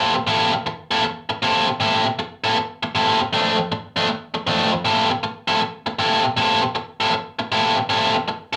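Blues with a rollicking, gritty mood, this short excerpt runs just under nine seconds and is cut from a longer piece. It swings in four, driven by a single electric guitar playing solo from the first moment to the last. The guitar is biting and overdriven, picked with a bright edge and sitting up front, ranging from its low register up into the upper middle. The harmony moves from C6 to F6 at 3.3 seconds and back to C6 at 4.9 seconds, giving the brief passage a loose, good-time lilt. The sound is that of players in one small room, with a wet, short reverb and small room ambience lending the performance a live, unvarnished feel.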